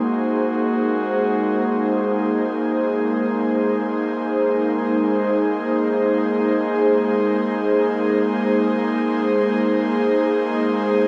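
A huge, wet reverb washes over this peaceful ambient excerpt in free time and Ab mixolydian, where a breathy, chorused pad sustains an Abadd9 chord up front over a warbling, vintage analog drone fading in from the background, while a mellow flugelhorn with delay sounds a brief, smooth-topped Gb4 melody until 3.3 seconds.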